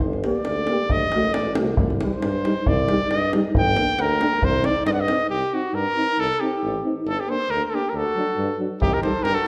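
A deep davul and a warm, roomy tuba with vibrato open this short cut from a longer Balkan brass band piece, and a clear, classical-style trumpet takes the lead almost at once, carrying a virtuosic, restless melody up front. The tempo sits at 136 BPM in a swung 2/4, in C dorian sharp4 with tuning at A4 = 443 Hz, as the harmony moves through G minor, D and C minor. Two euphoniums fill the middle in the background: one distant with a light vibrato in the upper register, the other mellow with a smooth top lower down. The davul drops out at 5.3 seconds as the music moves into a new section, and a warm second trumpet with a light vibrato slips in behind the lead at 7.9 seconds. The drum returns at 8.8 seconds for the closing moments, all within the wet, resonant ambience of a recital hall.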